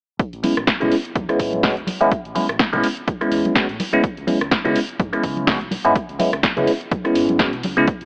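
This sunny, feel-good filtered disco house excerpt opens at 0.2 seconds with a punchy, overdriven electronic kick and an analog drum machine of hi-hat, rim click and snare, both up front. Bright tambourine and congas sit close but in the background, and a dark, round fingered electric bass with amped saturation sits low in the mix, both pumping under sidechain compression. At 0.4 seconds a bell-like tine electric piano comes in up front, clean and direct, colored by a phaser, pumping and a low-pass filter. The groove runs at 125 BPM in 4/4 with a light swing on the sixteenths, in A major tuned to A4 = 444 Hz, moving from Amaj7 to C#m7 at 3.8 seconds. A filter sweep runs through the whole passage, and the dry, gritty hardware sound with light reverb takes on an AM radio character.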